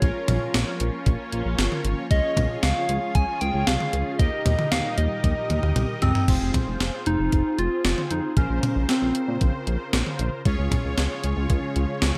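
Synth-pop in F minor at 115 BPM, this melancholic, cool 12-second cut from a longer piece sets a round, keys-like FM lead with delay and plate reverb over fat, detuned synth brass, a glossy chorused pulse-and-saw bass and thumpy gated digital drums with a fill at 5.2 seconds, while a silky phased string machine sits in the background, dropping out at 6.3 seconds and returning at 10.9 seconds across chords moving from Bbm through Db, Eb and Fm to Bbmadd9.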